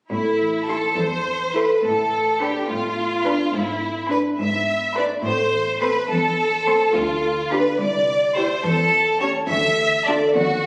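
In a straight 6/8 at 70 BPM, this short, playful and whimsical film cue in A minor feels mischievous and magical, with a rich, focused violin section up front carrying the second line, a bright, ringing concert harp spinning arpeggios, a smooth cello section holding the bass and an even viola section filling the accompaniment, while a lush, expressive violin melody sits high in the background from 0.7 to 10.3 seconds, all bathed in the wet bloom of a scoring stage as if heard on a phone in a club-like room.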